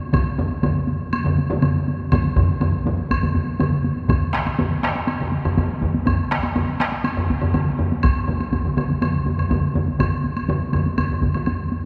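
Bathed in a long, cavernous cathedral reverb, this driving, powerful fragment of Japanese traditional taiko music moves at 122 BPM in a straight 4/4. A closely miked solo taiko struck with heavy sticks leads off, joined at 0.1 s by three taiko ensembles: one compressed, saturated and up front on heavy sticks, one distant in a large room on hard sticks, and one close, dry and set in the background, also on hard sticks. A woody woodblock sounds in a live room, and the piece shifts into a new section at 4.1 s.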